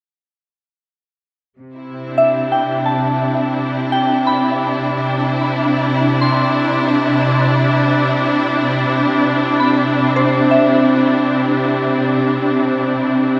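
A lush, bowed string section holds sustained chords up front from 1.6 seconds, joined by a sawtooth analog drone with chorus and a soft, warbling FM synth bell playing arpeggios through chorus, phaser and diffuse delay, all in a slow, luminous ambient piece in C major at 53 BPM in 3/4, resting on Cmaj7 and bathed in a huge reverb.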